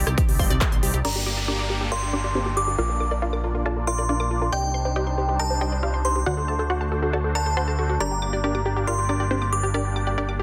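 Soaring and emotional, this uplifting trance passage is cut from a longer piece and moves over a harmony of Cmadd9, Gm, Bb and D7. A lush, detuned unison pluck carries the melody, with tape echo and sidechain pumping, while an evolving supersaw swell holds sustained chords underneath and a fat, thick analog bass sits up front. In the background, a round, chorused analog pluck spins bright arpeggios, and from 1.0 seconds both plucks move through a filter sweep. A punchy, overdriven electronic kick and a big-room kit with crisp hats, handclaps, rim click and crash cymbal hit only briefly at the start, falling away by 1.1 seconds. At 1.0 seconds a glassy, crystalline FM bell adds a second line, chorused and echoed, while an electronic downlifter sounds alongside it until 4.5 seconds. The mix carries a moderate digital room reverb and a dense, heavily limited modern master.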